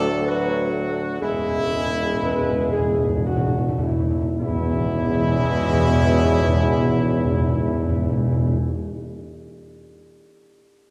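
Classical brass fragment in a stately triple metre, majestic and regal, where a distant trumpet section carries the melody with light vibrato over sustained chords from a mellow French horn section in the background and very quiet, soft-attacked trombones, while a warm tuba with vibrato anchors the bass and up-front, dry timpani with soft mallets enter at 1.2 seconds with a round fill as the opening phrase slows, the trumpets, horns and tuba set deep in a reverberant scoring stage.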